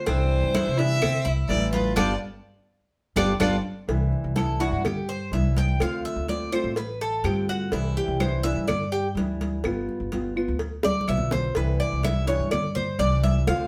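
A straight 4/4 groove at 125 BPM drives this relaxed Cuban son and guajira passage in C major, with thin-skinned congas sitting in the background alongside tight, high-tuned bongos and cowbell struck with hard hands, and woody claves. Up front, a dark, thumpy upright bass with gut strings holds the low end, while a small, thumb-plucked nylon-string guitar provides accompaniment, its finger squeaks audible. A single bowed violin carries the opening melody with vibrato, soft attacks and portamento, ending at 3.6 seconds as the band hits an accent and a drum fill leads into the next section. From 3.9 seconds the Cuban tres, metallic with picked double strings, takes an arpeggiated solo over Cadd9, Dm7 and G7 chords, with a second fill arriving at 10.8 seconds. The group plays live in one room, wrapped in a wet studio reverb that gives this excerpt from a longer piece a warm, close-knit feel.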